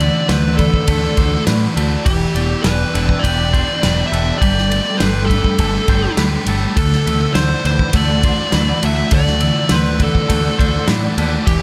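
A dark, distorted fuzz lead guitar with tape echo carries the melody through this hazy, dreamy shoegaze and dream pop rock excerpt, over a thick fuzz guitar riff, a crunchy overdriven guitar riff with reverse reverb and twangy, chorused electric guitar arpeggios set back in the mix, mellow vintage string-machine violas holding soft sustained chords, a growling overdriven picked bass and a loose, small-room indie drum kit of tight kick, snare and ride, all moving through Dadd9, Em7 and Gsus2 under light studio reverb.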